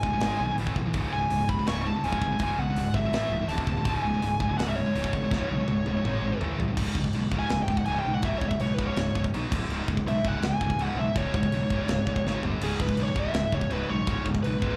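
A straight 4/4 pulse at 164 BPM drives this heavy, aggressive heavy metal passage in C# phrygian, cut from a longer piece. A tight metal drum kit with bright cymbals, a medium-tuned snare and a tight kick sets the pace on crash, hi-hat, snare and toms, and rolls into a fill at 5.3 seconds. Beneath it, a growly, fuzz-laden picked electric bass with overdrive holds down the low end. An up-front, scooped high-gain guitar churns out the distorted riff throughout, joined by a very quiet second scooped guitar that drops out at 6.8 seconds. At that moment a dark, distorted high-gain lead guitar, colored by slapback echo and delay and already voicing its melody from the start, breaks into a solo that runs to 14.8 seconds. The whole thing sounds like a live gig heard through the venue's PA, with light club reverb around it.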